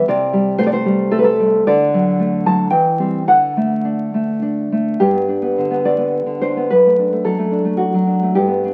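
A thumb-plucked nylon-string guitar sits up front in this short romantic solo excerpt, its classical tone sunny and warm as it moves freely in a rubato 3/4 at roughly 103-119 BPM, spanning F#2 to A5. The harmony opens on Am7/C and turns through D and C/E before shifting at 5.0 s to G and D/F#. A moderate studio reverb surrounds the playing, and the sound carries the crackle and aged character of a very old 78 rpm record.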